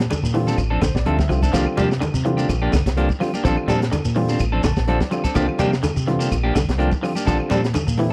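A joyful, driving afrobeat groove with a light swing, cut from a longer piece, opens on dark, clean electric guitar stabs over a round, deep dub fingered bass, a compact cocktail kit with a punchy kick and high-tuned snare, and a grainy, distant shekere. A twangy, slightly broken-up guitar picks arpeggios through an ensemble chorus, woody claves sit in the background and ringing congas play very quietly, while a barky, gritty overdriven tine electric piano joins at 0.3 seconds and adds fills around 0.6 and 4.4 seconds. The harmony alternates between Bbmaj9 and C9sus4, captured in a dry, close 1970s-style studio recording with small room ambience.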